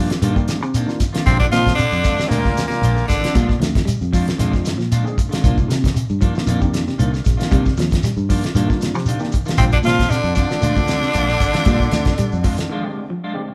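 Intense and hypnotic, this afrobeat excerpt at 115 BPM rides a lightly swung 16th-note feel over a vamp alternating Cm11 and Bb7. A damped 70s drum kit sits up front with a fat snare, tight kick and rolled-off top, joined by a grainy, mellow shekere and a dark, round, foam-muted fingered bass. A very quiet semi-hollow guitar plays clean arpeggios while a second clean, picked guitar adds stabs through spring reverb, and a worn, slightly out-of-tune tine electric piano, lightly overdriven, fills in the background. At 1.3 seconds the horns enter: a raspy, gritty tenor saxophone carries the melody with vibrato and scooped notes, backed in the background by a punchy baritone saxophone and a nasal, brilliant trombone with a straight mute. The horns drop out before returning at 9.6 seconds, and a short break arrives at 12.7 seconds as the drums, shekere and bass stop. The whole band sounds like it is playing live in one room, wrapped in a wet studio reverb.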